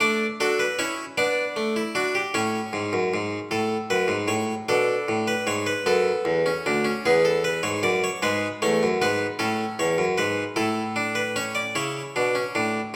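Elegant and lively, this short cut from a longer baroque-style four-part fugue in 12/8 at 51 BPM features a solo Flemish-style harpsichord, airy, plucked and up front on a single set of strings, ranging from D2 to D5 through chords of A, Bm7 and E before a rootless F#m7 arrives at 11.8 seconds, all set in a moderate recital hall reverb.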